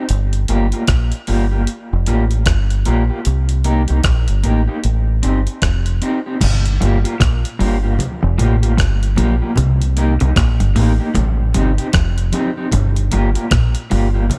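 A digital ambience surrounds this short excerpt of roots reggae, where a deep, dark, round dub bass sits up front with a punchy, direct-and-amped tone. The mood is laid-back and hypnotic at 76 BPM in 4/4 and G minor, with a 16th-note swing, cycling through Gm7, Cm7 and Am7b5. A gritty, pitched-up breakbeat kit with a thumpy kick drives the groove up front, using crash cymbal, hi-hat and rim click. From the start, an electric guitar at the edge of break-up plays accompaniment in a slightly broken-up, compressed voice, treated with tremolo and dub echo. At 6.4 seconds a clean electric guitar enters in the background with a low riff, warm in tone and treated with tube saturation and spring reverb. Thin-skinned congas arrive at the same moment, bright and distant in a large room behind the band, playing through the second half alongside the others until the end at 14.4 seconds.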